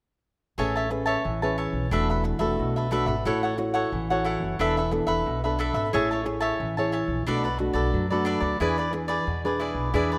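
At 0.6 s a crisp, picked cavaquinho and a thumb-plucked classical nylon-string guitar, both up front, enter together with a woody pizzicato upright bass on steel strings, setting a joyful, playful samba at 90 BPM in A major. The three acoustic parts move through Amaj9, E9sus4, A6, E7sus4, Amaj7, Bm7 and E7, with finger squeak audible on the guitar. A moderate, lush hall reverb surrounds this rough home-demo-style excerpt cut from a longer piece, which runs to 10.2 s.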